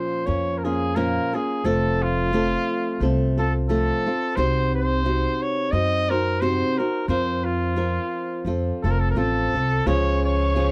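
A clear, roomy classical-style trumpet with vibrato sings a proud, romantic mariachi melody over bright fingerpicked flamenco guitar, complete with finger squeak, from the very start, joined at 0.3 s by woody, growly pizzicato upright bass, all moving at a loosely swung, rubato 88 BPM through Bbm, F, Cdim, Fsus4 and F, until a soft-attack, dark bowed violin section drifts in quietly in the background on a Db chord at 9.9 s, in this dry, close 1970s-style studio recording with light reverb, cut from a longer piece.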